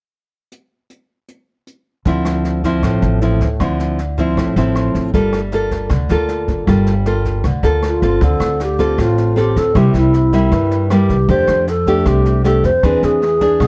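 Brushed drums open this melancholic, intimate bossa nova excerpt in D minor at 156 BPM, joined at 2.1 s by a full-bodied, fingerpicked nylon-string guitar and a woody, growly pizzicato upright bass over Dm9 and Gm9, before an airy, hollow alto flute takes the melody at 7.9 s as the chords move through Dm7, C7, F69 and E7b13, with light reverb and a worn, warbling cassette-tape pitch drift over the recording.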